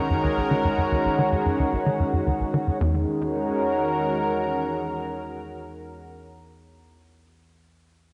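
A lush, thick unison pad opens this ambient excerpt at 0.0 seconds, holding bright, airy sustained chords up front with a detuned sawtooth and square-wave character, a noise layer and a chorus shimmer. Almost at once, a tight, punchy sequencer bass enters with a driving riff of fast-attack sawtooth and square plucks, coloured by analog chorus and tape echo, before it stops at 3.1 seconds. Beneath both sits a mellow, evolving analog drone in the background, its detuned pulse-width tones drifting through a moving notch with a slow attack and long release. The harmony rests on B and then moves to E at 2.8 seconds, settling into a cosmic, expansive E lydian mood at 111 BPM in a straight 4/4. A 3-second plate reverb soaks the mix and the top end is rolled off, lending the whole passage a dreamy, floating haze.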